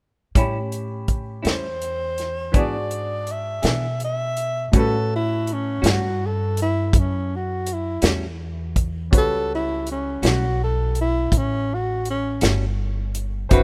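A clear upright piano with audible action noise opens this laid-back, gritty slow blues excerpt, joined almost at once by a clean picked electric guitar with tremolo, a woody pizzicato upright bass and a soul drum kit with a tight kick and rolled-off top, before a breathy tenor saxophone enters at 1.5 s with a whispered, intimate subtone solo full of vibrato and scooped notes, captured in a rough home demo mix with little reverb.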